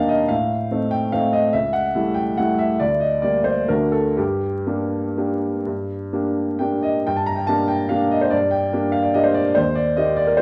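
A rubato waltz in 3/4, moving between 116 and 152 BPM, this wistful, elegant classical piano fragment in G minor features a woody, smooth upright piano with long sustain that drifts from an opening A diminished chord through A7/C#, Gm/D and D to G minor before touching E-flat at 9.6 seconds, all set in the lush reverb of a large studio with a vinyl crackle that lends a vintage air to this short excerpt from a longer piece.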